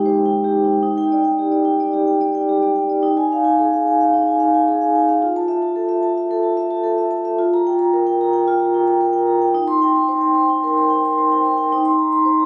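Flowing and warm, this contemporary classical piece for solo vibraphone moves at 110 BPM in 4/4 with a rubato feel, centred in E-flat major and tuned to A4 = 442 Hz. Played with soft mallets across a range from Ab3 to C6, the vibraphone sits up front with a metallic, ringing yet mellow tone and a slow motor vibrato, drifting through chords such as Abmaj7, Ebmaj7, Fmaj7 and Eb6. The instrument sounds in a moderate, stage-like reverb with a 1.6-second decay, in a 12.5-second passage cut from a longer piece.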